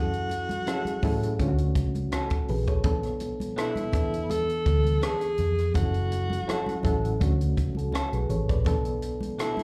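Lush 1970s-style soul with a smooth, silky mood and a light sixteenth-note swing, cut from a longer piece heard live through a club PA, where a breathy, vibrato-rich alto saxophone carries the melody up front over a reedy, worn electric piano with fast tremolo and slight overdrive, a dark, foam-muted fingered bass, a dry cocktail drum kit with a punchy kick, hi-hat and rim clicks, soft-handed high-tuned congas in the background, and a slightly broken-up, lo-fi electric guitar riff entering at 0.7 seconds.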